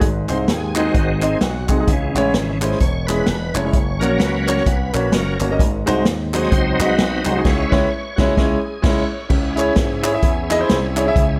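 Fervent and soulful, this excerpt of uptempo gospel swings at 129 BPM in C# harmonic minor, with a shouting tonewheel organ, voiced through a slow rotary speaker and chorus vibrato, taking the lead with sustained chords that move from G# through C#m, F# and G#7. A clear, intimate grand piano with audible action noise comps up front, while a punchy slap bass with an envelope filter, a roomy big-band drum kit with a boomy kick and rolled-off top, and hollow group handclaps drive the groove. The band hits a shared accent from 7.5 to 9.3 seconds before a new section arrives, all set in a small room with light reverb.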